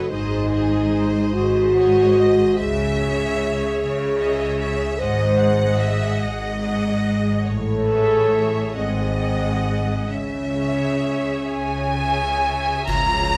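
In a rubato 6/8, this elegiac, yearning slow orchestral movement opens with a clear first violin section carrying the melody over a second violin line, a close viola accompaniment, dark, distant French horns holding sustained chords up front, and a foundation of lush cellos and double basses. At 10.1 seconds a cymbal swell, bright clash cymbals and concert bass drum join, and an airy, hollow flute slips in very quietly at 11.5 seconds before a full-ensemble accent at 12.9 seconds. The recital hall reverb gives the closely and precisely recorded strings a moderate sense of space.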